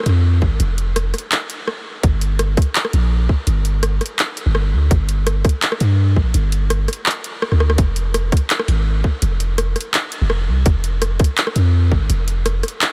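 A long, sustained 808-style bass underpins this heavy, cinematic half-time drum and bass cut, its deep, sine-like tone striking with a fast attack and decaying mellowly between F1 and G2 in F dorian. At 167 BPM in 4/4 with a half-time feel, an electronic kick drum sits up front, tight and layered, with an overdriven edge. The drum kit, also overdriven and up front, adds handclaps, rim clicks and bright hi-hats in a produced, electronic style. A drum fill arrives at 7.5 seconds, breaking up the steady groove of this single section taken from a longer piece. Light reverb and digital ambience give the mix a faint sense of space around its punchy, brooding low end.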